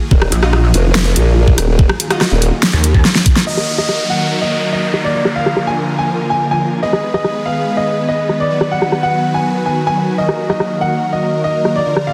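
Heavy wobble dubstep at 143 BPM in a half-time feel, menacing and chaotic, set in Eb harmonic minor and cut from a longer piece. It opens on a drop where a formant-sweep wobble bass and a pulsing, detuned pluck wobble bass, both overdriven and chorused, growl low beneath a knocking, layered electronic kick and a bright, punchy orchestra-hit-like stab that sits in the background with delay. A huge, detuned supersaw pad sustains chords throughout, pumping against the sidechain, while an overdriven dubstep kit with a massive snare and filtered hats carries the beat to the end. The basses and kick drop away between 2.5 and 3.3 seconds around a drum fill, and at 3.5 seconds an intimate, boxy grand piano takes the melody with audible action noise and delay, over a downlifter and chords moving through Ebm, Bb, Abm and B. The mix is dense and heavily limited, with a lush hall ambience around the parts.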